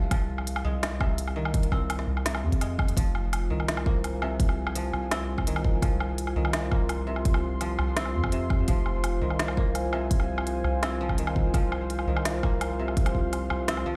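A dark, detuned sawtooth pad with chorus and sidechain pumping holds sustained chords over mellow, fingerpicked koto arpeggios with digital delay and a thick, saturated sine sub bass in F minor, and from 0.1 s a hard-clipped electronic kick sits up front beside an organic electronic kit of woody snare, crisp hats and woodblock, tape-warm and re-recorded in a large room, carrying this spacious, cinematic half-time drum and bass cut from a longer piece at 168 BPM, heard through a big sound system in a bare stone room.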